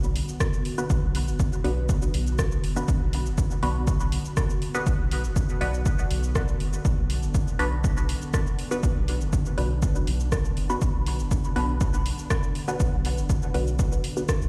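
Dub techno at 121 BPM in B minor, this cavernous, meditative excerpt rests on a single B minor chord throughout its 14.5 seconds. An airy, breathy pad holds sustained chords with a slow attack and long release, its detuned layers softened by chorus and sidechain pumping. Beneath it, a round, soft dub sub bass sits deep in the low register, pumping in the same way. An overdriven electronic kick enters at 0.4 seconds and sits up front, while an analog drum machine adds hi-hat, rim click and shaker with overdrive and dub echo. From 0.8 seconds, a muted, filtered chord stab with a short, plucked decay evolves through phaser and dub echo. The whole mix sounds as if played on a big sound system in a bare room, bathed in a large studio reverb.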